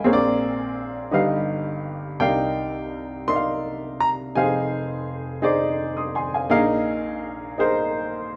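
Slow, soulful and uplifting gospel in 6/8 at 56 BPM, cut from a longer piece, where a woody, natural upright piano sits up front with the accompaniment through rich chords such as Bb9, Cm11, Fm7 and Bb7sus4, while a clear, polished baby grand adds a brief high melody from 2.2 to 5.4 seconds, all captured as a band playing live in one room with a moderate large-studio reverb.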